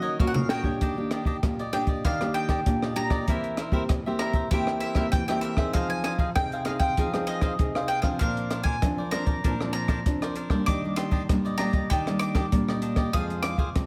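Light reverb colours this lively, bittersweet samba-choro excerpt, with a fingerpicked classical nylon-string guitar and a compact cocktail drum kit sitting up front. The drums, with their dark, smooth tone, high-tuned snare, punchy kick and rolled-off top, enter with a short fill while the bright, picked bowl-back mandolin carries the melody over the crisp cavaquinho and the warm guitar. The harmony moves from Ebm7 to Ebmaj7 and on through C7/E, Fm7, Bbadd9 and back to Ebmaj7, and the piece is cut off on Fm at 13.9 seconds.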